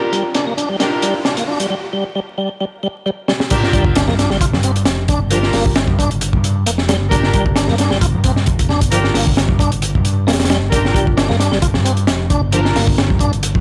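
Raw and energetic, this short breakbeat cut runs at 133 BPM in G minor, with a build-up that gives way to the drop at 3.5 seconds. A crunchy, up-front breakbeat kit drives it, its punchy kick, high-tuned snare, hi-hat and dark cymbals saturated and gritty with a rolled-off top, while a low-pass filter sweep shapes the drums through the opening build. A tonewheel organ riff runs throughout, full and clean with key click, chorus vibrato, a fast rotary speaker, tube saturation and dub echo. Dark, floating string-section stabs, bowed sul tasto with a soft attack, sit under a low-pass filter and dub echo, and an electronic riser and sub drop hover in the background, the riser swelling in the first seconds before the impact lands with the drop. From 3.7 seconds an overdriven fingered electric bass enters, amped and punchy, anchoring the Gm7 harmony that follows the opening Gm. A small room ambience and vinyl crackle lend the recording a lo-fi grit.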